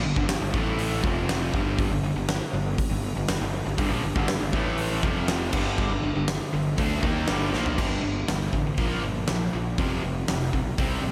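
Heavy and aggressive, this 120 BPM hard rock clip in G dorian puts a huge arena drum kit up front, its punchy kick and fat snare driving to a fill at 7.5 seconds, over a growly fingered fuzz bass and three picked guitar riffs in the background: a double-tracked overdriven guitar with spring reverb and slapback echo that drops out at 7.8 seconds, a dark, sludgy guitar with slapback echo, and a bright, tight distorted guitar that joins at 3.8 seconds, set inside a lush hall reverb for a big arena sound.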